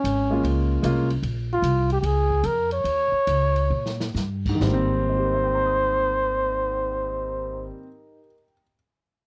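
A dry, close recording in a 1970s studio style frames this relaxed, sophisticated fragment of small-group swing and bop, cut from a longer piece. Up front, a mellow flugelhorn with vibrato and a soft attack carries the melody over a woody, thumpy pizzicato upright bass on gut strings. A dark, smooth drum kit with a boomy kick plays a fill at 3.7 seconds as the pace slows, then stops at 4.8 seconds, while a polished grand piano with long sustain makes a brief early entry and returns at 4.5 seconds.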